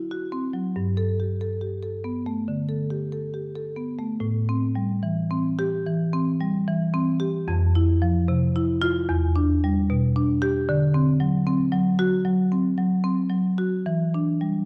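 A solo marimba played with medium mallets carries this flowing, hypnotic fragment of a contemporary classical piece, its padauk bars giving a woody, full tone that sits close-miked and up front. The playing moves with a rubato feel in 4/4 at roughly 69-77 BPM, centred in A dorian and ranging from E2 up to A4. The harmony opens on a rootless D9 and a Gadd9, then shifts at 4.2 seconds into a longer passage that moves through Am7, F5, Em7 and D7 before settling back on Em7 at 13.9 seconds. The instrument itself is captured dry, while a recital hall reverb with a 1.3-second decay adds a wet sense of space around it. The overall production is dark and warm, and the recording, cut from a longer piece, runs 14.7 seconds.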